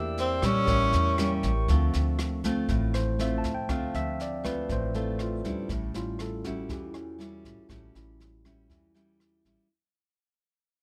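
This intimate, wistful bossa nova fragment in D minor at 120 BPM opens with a fingerpicked classical nylon-string guitar with audible finger squeak, a woody pizzicato upright bass, a bright, lightly overdriven tine electric piano through a combo amp, and a glass harmonica holding pure, ethereal chords. A brushed jazz kit with a boomy kick, medium-tuned snare and rim clicks joins almost at once, alongside a tenor saxophone placed up front that plays a short phrase with vibrato, a soft attack and scooped notes until about 1.4 seconds. Under an Em7b5 to A7b9 turn, the glass harmonica's smooth, glassy sound holds until 1.7 seconds, when the harmony settles on Dm7 and later moves to A7. From there the barky electric piano takes a solo as the piece fades out. The close, detailed sound with little reverb lets the full-bodied guitar and the airy, polished drums come through clearly.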